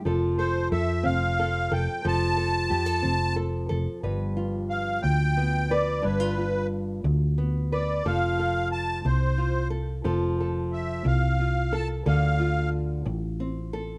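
A fingerpicked nylon-string guitar opens this nostalgic, hopeful acoustic folk piece, cut from a longer work, in 6/8 at 60 dotted-quarter beats per minute in G mixolydian. A round, dark hollow-body electric bass, picked and amped, joins almost at once, and a reedy, shimmering musette accordion enters at 0.4 seconds and carries a solo across the passage over chords moving from F to G7, back to F and on to Dm7. The guitar sounds small, the accordion smooth, and all three sit up front, played live together in one studio room with a moderate reverb.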